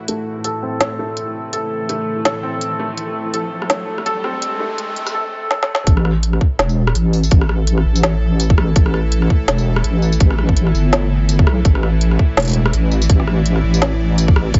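A string-like drone opens this heavy, spacious half-time drum and bass excerpt at 166 BPM, its detuned sawtooth chords carrying a noisy edge, vibrato, built-in reverb and a sidechain pumping that gives the sustained harmony a tense breathing motion over an A5 chord. A felt-muted upright piano plays soft, mellow arpeggios up front, with audible action noise, a low-pass filter and digital delay, while an organic electronic drum kit with a woody snare, crisp hats, rim clicks and tambourine swings its 16ths in a tape-tinged small-room sound. Filter sweeps on both drone and piano shape the build-up, and a background riser enters at 1.6 s before a drum fill leads into the drop at 5.9 s. There the piano stops, and a deep, dark wobble bass with chorus arrives alongside a tight, layered electronic kick, both sitting up front beneath the continuing drone and kit until the cut at 14.6 s. The mix is framed by light digital ambience and a high-pass filter.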